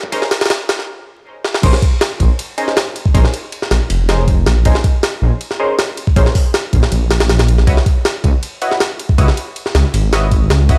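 A dry, gritty hardware recording with vinyl crackle and little reverb opens this raw, frenetic drum and bass cut at 159 BPM, a fragment of a longer jungle piece. A sampler-style jungle kit sits up front from the start, compressed and pitched up, with a thumpy kick, a high-tuned snare, crash, ride and hi-hats, all carrying a tape-like glow and the air of a large room they were re-recorded in. A band-passed chord stab enters at 0.1 s, nasal and bright with detuned sawtooth edges, a fast attack and a decaying tail, colored by chorus, phaser and dub echo as it moves over Bbm11 before shifting to Dbm11 at 7.7 s. The opening build-up thins into a brief break and a drum fill at 1.4 s, then the drop lands at 1.6 s as a detuned saw bass comes in. That bass is thick, dark and menacing, blending sawtooth and sine with a beating, saturated sustain that rumbles low and up front beneath the frantic kit.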